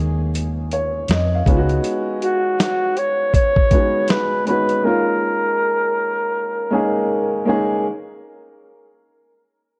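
A breathy flugelhorn carries the melody from 2.2 s, its soft attack, light vibrato and whispered, intimate jazz phrasing sounding distant and roomy even as it sits up front. This reflective, melancholic lo-fi hip hop fragment moves at 80 BPM in 4/4 with a swung sixteenth-note feel, cut from a longer piece. A dark upright piano, woody and smooth with a vintage mellowness, plays the accompaniment throughout over chords shifting between Eb9sus4 and Db9sus4. A foam-muted electric bass, round and amped, appears only briefly at the start, dropping out by 1.8 s. A dusty sampler-style drum kit with a thumpy kick, medium-tuned snare and hi-hat runs from 0.4 s to 4.8 s, its compressed, gritty, tape-warm character grounding the groove. The flugelhorn then closes at 7.5 s, and the piano carries on briefly to the end under light reverb and digital ambience.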